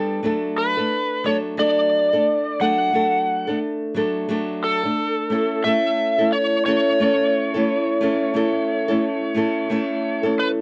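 A small, fingerpicked nylon-string guitar opens this carefree, sunny pop excerpt, sitting up front and giving a gentle swung lilt to the accompaniment. At 0.6 seconds an electric slide guitar enters with the melody, overdriven and bright, playing just above the acoustic part and sharing its close, forward placement. The harmony is simple, resting on D before shifting to A at 5.3 seconds. Both guitars carry a cassette-tape coloring, and the home recording has a modest, tight booth ambience. The two instruments play together through to the cut at 10.6 seconds, keeping a relaxed, easygoing feel throughout.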